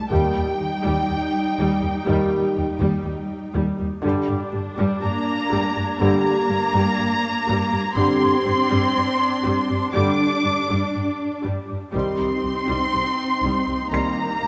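This cinematic suspense score fragment, cut from a longer piece, sets an eerie, tense mood at a slow, straight pulse. Con sordino violins carry the melody, with a second violin line alongside in the same high register, both veiled and softly attacked with vibrato. Beneath them, muted violas add lush accompaniment while muted cellos and a close double bass section hold down the low end. A dark French horn section and a bright trombone section with light vibrato sustain tight chords through the passage, moving from Eb to G minor and then C minor. From 4.0 to 11.4 seconds a distant, veiled violin texture hovers very high in the background, and at 13.9 seconds a mellow, thick-felt upright piano adds a soft, intimate glint just before the cut. A wet concert hall reverb surrounds the whole ensemble.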